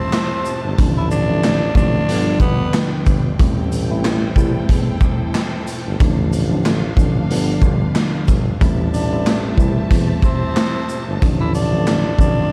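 A growling tenor saxophone, a worn tine electric piano with a cassette-tape character, and a lush studio string section open this tough, moody boom-bap hip-hop excerpt in A minor, set at 92 BPM in 4/4 with a swung sixteenth-note feel. The saxophone plays the melody in a jazz style, breathy and raspy with a soft attack and scooped notes, colored by analog delay. It drops out at 2.9 seconds and returns at 8.9 seconds. The slightly out-of-tune electric piano carries the accompaniment through Am7, Dm7/A and G7, while the bowed strings hold sustained chords quietly underneath with vibrato and portamento. Up front, an acoustic garage drum kit sounds saturated and gritty, with a punchy kick, a medium-tuned snare, hi-hat, shaker and handclaps in a bright, pumping stone room, and a mellow tuba enters on the bass line at 0.6 seconds with light vibrato and a smooth top. The production is dark and dry, dusted with vinyl crackle.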